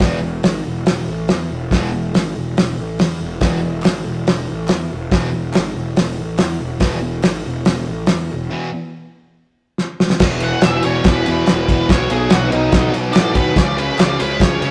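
Garage rock at 141 BPM in E major, raw and rowdy, driven by a bright, double-tracked fuzz guitar riff over overdriven fuzz bass and an up-front, cloth-damped drum kit with a fat snare, tight kick and dark cymbals. Hollow group handclaps sit very quietly in the mix from 3.8 s, and after a break and drum fill an octave-fuzz lead guitar enters at 10.4 s with a dusky solo over E5, B and C#5 chords. The rough rehearsal-room sound carries tube saturation and a moderate stone-room reverb, and the clip is cut from a longer piece.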